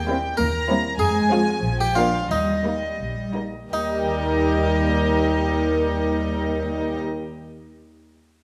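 A round, plucked harpsichord carries the tune in this quirky, magical film cue from a longer piece, joined by a rich, distant violin section floating above, while a second violin section and violas add soft sul tasto inner lines and dark, intimate cellos and double basses anchor the bass, the strings all bowed gently in a moderate scoring-stage reverb as the music slows between 0.4 and 3.7 seconds.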